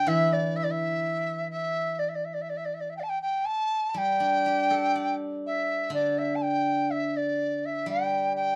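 Chinese traditional music in a festive yet pastoral mood, this short excerpt cut from a longer piece moves at a relaxed 62 BPM in 2/4 with a free, rubato feel, tuned to A4 = 437 Hz. A large dizi carries the melody from D5 to A5 throughout its 8.6 seconds. Its bamboo tone has a buzzing membrane, an airy edge, a crisp attack and vibrato, placed up front with a slightly distant quality. Beneath it, a steel-string zither played with fingerpicks provides accompaniment from D3 to D5, its acoustic sound ringing and silvery. The music falls into two sections, with the second beginning at 4.0 seconds. A moderate studio reverb and a dark, warm production give the pair a soft, rounded space.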